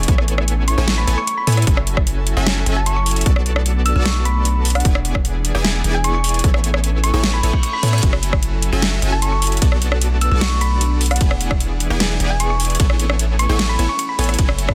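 Dreamy and lush, this future bass excerpt moves at 151 BPM with a half-time feel over a looping Amaj9, F#m9, Bm7, E7 progression, with sidechain pumping on the airy, breathy background pad, the punchy detuned supersaw stab riff with tape echo, and the deep, sine-like 808-style bass with tube saturation. A hard-clipped electronic kick and a layered dubstep kit with a huge snare, metallic hi-hats, ride cymbal and rim click sit up front with a tape-tinged punch. From 0.7 s a round, tine-like thumb-piano-style pluck carries a gentle, dark melody through chorus and tape echo, while a reverse cymbal rises behind the mix at 7.5 s in a dense, heavily limited master with little reverb.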